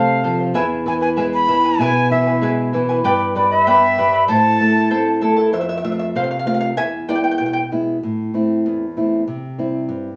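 This Andean folk piece for a small ensemble has a wistful yet festive mood, moving at 96 BPM in a straight 2/4. A reedy, airy cane quena carries the melody up front with a soft attack and a straight tone, lifted by a touch of plate reverb, until it drops out at 5.2 seconds. Beneath it, a fingerpicked charango with shimmering double strings adds warm accompaniment and takes a solo from 5.5 seconds, stopping at 7.6 seconds. A small, fingerpicked nylon-string guitar with fresh strings anchors the lower register throughout, while chords such as F, E, G and Am give the harmony its wistful colour. The close, warm sound sits in a modest room ambience, and the recording is cut from a longer piece.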